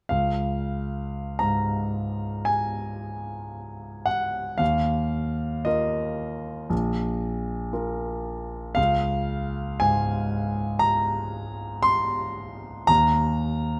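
Close, detailed microphones place a grand piano up front in a moderate concert hall, where a two-second reverb tail softens its edges while the audible action noise keeps the sound intimate and natural. This short passage, cut from a longer impressionist solo piano work, is in Db major and moves at a slow 58 BPM in 4/4 with a free, rubato feel. The piano is the sole voice, playing from 0.1 to 13.8 s across a span from Bb1 up to C6, and its tone is clear. The harmony drifts from Db6 to an Ebsus2 at 4.6 s, passes through Bb5 and returns to Db6, then settles on Eb5 near the close. The mood is luminous and hazy, and the instrument is tuned to A4 = 438 Hz.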